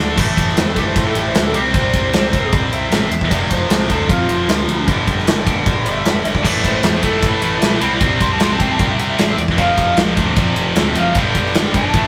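A straight, driving 4/4 at 153 BPM in A minor powers this aggressive hard rock excerpt, cut from a longer piece, as a drum fill at 0.0 s launches a big, punchy, up-front acoustic kit with bright cymbals under a bright high-gain riff guitar, a very quiet sludgy distorted guitar, and a fuzzy, overdriven picked bass, while from 0.6 s a dark, lo-fi lead guitar through a small cranked amp solos over the A5, C, F5 and G5 changes, and a scooped, double-tracked high-gain guitar joins in the background at 6.4 s, all set in a rough rehearsal-room recording with moderate stone room reverb.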